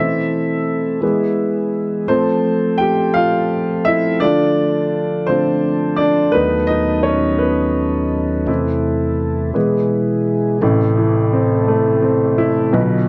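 Set in a light small-room reverb, this dramatic, aching six-eight pop ballad in A minor, cut from a longer piece, moves at 56 BPM as an open, long-sustaining baby grand piano sits up front carrying a solo until 10.6 s, while a soft, flute-like tonewheel organ with audible key click and a slow rotary speaker holds sustained chords through a progression from Am/E through F, Dm and B7/D# before settling on Am at 10.6 s.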